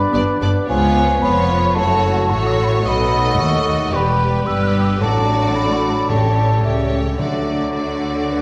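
Cheerful and spirited, this brisk classical-period orchestral passage is cut from a longer movement and unfolds in a steady, straight four. The rich, vibrato-laden violin section carries the melody, joined by a second, more focused violin line in the background, with a lush, very quiet viola section filling the middle and a clear cello section and focused double bass section anchoring the bass. Woodwinds round out the texture: an airy, hollow wooden flute stands out with its crisp attack and soft top, while a mellow oboe and a distant, roomy clarinet add quieter second lines and a punchy bassoon supplies accompaniment. A mellow French horn section holds sustained chords in the background, and timpani struck with hard mallets enter at 5.0 seconds, sounding close and dry until 8.0 seconds. The harmony moves from G through a string of chords toward a cadence on D, all bathed in the reverberant glow of a recital hall.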